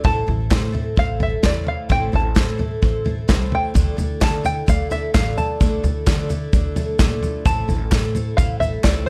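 Indie folk with a building arrangement, this yearning, stirring excerpt moves at 130 BPM in D minor, its harmony shifting from Am to Dmadd9 and back to Am. A mellow, twangy, fingerpicked open-back banjo carries the melody over a shimmering, octave-doubled twelve-string acoustic guitar with audible finger squeak, while a woody pizzicato upright bass sits in the background. An up-front unplugged drum kit played with bundle sticks brings a punchy kick, medium-tuned snare and toms, crisp group handclaps join at 0.5 seconds, and a grainy, distant tube shaker enters at 3.8 seconds, set in a dark, warm production with light reverb.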